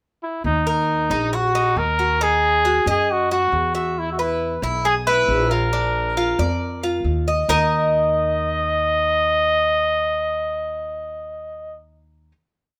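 A warm, up-front trumpet with light vibrato carries a punchy, vintage motif-based melody through this short, nostalgic Cuban son and guajira piece in Eb phrygian at 136 BPM, joined at 0.4 seconds by a woody, thumpy upright bass playing a tumbao that anticipates the chords and at 0.7 seconds by a bright, metallic Cuban tres picking an arpeggiated guajeo, moving from Ebm through Emaj9, E and Bb to a closing Eb5 chord at 7.5 seconds in a small room.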